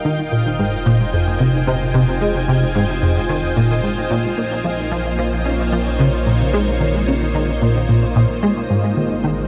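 Luminous and expansive, this short passage of ambient, sequencer-driven space music moves at 111 BPM in a straight 4/4, drawn from a longer piece. A plucky analog bass carries the riff up front, its punchy, funky sawtooth and pulse-wave tone shaped by a fast-attack filter pluck that decays, with ensemble chorus and analog delay, before it stops at 9.3 seconds. Alongside it, a vintage string machine holds lush sustained chords with a slow attack, sub-octave weight, long release and its own ensemble chorus. Beneath them a deep, round sine sub bass adds mellow warmth through tube saturation, while a twinkling granular texture with sparkling octave-up shimmer glints quietly in the background through its built-in reverb. The harmony moves from Fm to Bbmadd9 at 4.4 seconds and reaches Ab at 8.7 seconds, all set in a huge, wet ambient reverb with a 7.3-second decay.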